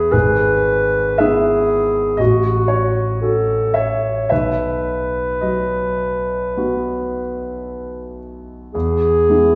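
This romantic classical duo for clarinet and grand piano feels tender and serene, moving in a flexible rubato over a 4/4 pulse in a short passage taken from a longer piece. The dark, soft-attacked clarinet carries the solo melody in a narrow middle register with a roomy quality, while the warm concert grand piano accompanies it, reaching down into a deep bass. Both play together throughout, set in a reverberant recital hall and heard from further back in the room, with the harmony settling onto a resolving chord at 8.7 seconds.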